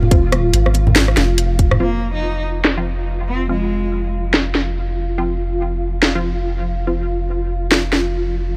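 An overdriven garage drum kit with a cracking snare and low-passed hats drives this meditative, cavernous deep dubstep excerpt in a swung half-time feel, with a tight, up-front electronic kick and low-tuned congas in the background sounding only briefly at the start, while a round, soft sub bass sits beneath a cloudy granular pad that takes a filter sweep, muted phased chord stabs trail dub echo, and a distant, nasal bowed cello with 12-bit grit carries the melody from 1.8 to 4.1 s.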